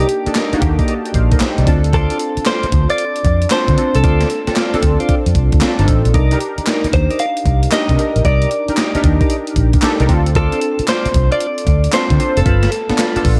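A dry, close-sounding mix opens this short excerpt of bouncy, punchy new jack swing at 114 BPM, with a 65% 16th-note swing in 4/4. Up front, a gated 80s drum machine hits hard with a thumpy kick, a gated-reverb snare, hi-hat and handclaps, its sampler-style tone carrying a tape warmth, while a foam-muted fingered bass sits dark and round underneath, loud and punchy. A clean, direct-recorded electric guitar carries the melody between G4 and F5, its picked, compressed tone dressed in lush chorus and digital delay. Analog keys fill out the accompaniment with detuned sawtooth chords that have a filter sweep, fast attack and decaying tail, treated with chorus and phaser, as a smooth tonewheel organ adds key-clicking stabs through a slow rotary speaker and delay. The harmony moves between Cm9 and Dm7 before landing on G9 near the end, and from 6.7 seconds a very quiet, crisp group handclap joins in the background.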